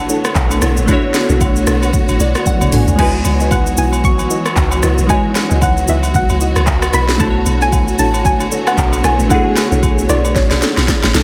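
A swung sixteenth-note groove at 114 BPM in 4/4 drives this soulful, late-night amapiano excerpt, built on an electronic afro-pop drum kit set up front with a deep kick, sharp snare, hi-hat, shaker, rim click, handclaps, toms and crash, re-recorded in a large room, with fills at 2.5 and 10.4 seconds. Beneath it, a deep log drum bass sits low and dark, round and percussive with a fast attack and decaying tail, while agogo bells and woodblock add a compressed, saturated layer of percussion in the background. A soft, round pluck carries the melody in a high register, its wave-folded tone treated with chorus and analog delay, over glassy, detuned digital keys that play accompaniment and a short fill at 1.9 seconds. A lush, bowed symphonic string section holds sustained chords with vibrato and sidechain pumping, and a mellow, nasal chord stab with a sub octave lingers in the background with its own chorus and delay. 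The harmony moves from Bm11 to C#m11 at 3.0 seconds and back to Bm11, all within an echo-heavy mix under light reverb and digital ambience.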